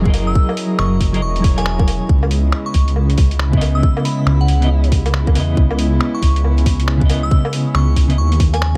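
Nocturnal and wistful, this future garage excerpt rides a swung groove built on a tight, up-front electronic kick, a muffled, overdriven lo-fi kit of finger snaps, hi-hat and woodblock, and a deep, rumbling detuned saw bass with sidechain pumping. A clean, picked electric guitar with tremolo and tape echo and a distant, bowed chamber string section roughened by 12-bit sampler grit both pump along, shifting from F#13 to C#m9 at 2.1 seconds. From 0.3 seconds a glassy FM synth bell drifts above in a high register through chorus, phaser and tape echo, all set in a dark, dry production with vinyl crackle.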